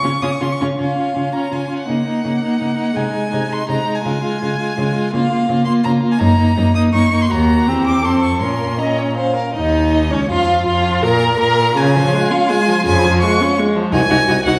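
In a quick 3/4 at 165 BPM, played with a rubato feel, this spirited, lively classical-period movement for string quartet in Db major is cut from a longer piece. A clear, focused first violin sings the melody close and up front with vibrato, and a second violin adds a rich, bowed second line. The viola gives warm, expressive accompaniment with vibrato and portamento, while a smooth, even cello anchors the bass, distant in character yet prominent, all in a reverberant recital hall, with a new section arriving at 9.6 seconds.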